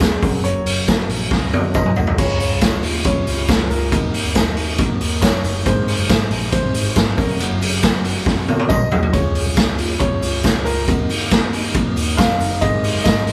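Bright and youthful, this short cut of jangly indie pop sets a woody upright piano melody with audible action noise over a gritty, saturated garage drum kit that rolls through fills at 1.3 and 8.3 seconds, a round foam-muted electric bass, slightly broken-up electric guitar arpeggios, a boxy parlour acoustic guitar, mellow chorused synth keys and a distant jingly tambourine, all caught by a band playing live in one room with light reverb.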